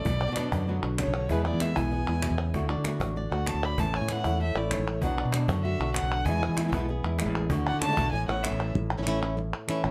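Proud and festive, this brisk flamenco passage at 193 BPM in A major cycles through Bm, E, D and A, led by a fingerpicked acoustic flamenco guitar melody on fresh strings while a second fingerpicked guitar adds stabs beneath it. A rich, bowed violin with vibrato and a smooth top plays a solo line until 8.8 seconds, joined by a punchy, up-front fingered electric bass, a snappy cajon struck with hard hands, and crisp, dry palmas hand claps. The sound is close and detailed with light reverb, and the guitar melody, bass and claps carry on briefly to the end at 9.9 seconds.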